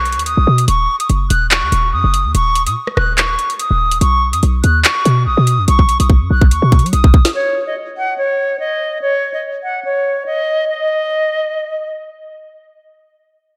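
A half-time drill groove at 144 BPM in 4/4 drives this tense, ominous hip hop excerpt. An electronic drum kit sits up front with a hard-clipped kick, woody snare, metallic hi-hats, rim clicks and handclaps, beside a punchy, tight sine 808 bass with a noise layer and fast attack, over chords of B and Ebm7. A drum fill begins at 5.7 seconds, and once the bass and drums drop out by 7.3 seconds the airy concert flute, with vibrato, a soft attack, a low-pass filter and diffuse ambient delay, carries on alone until 11.9 seconds, the whole dreamy mix soaked in lush hall reverb.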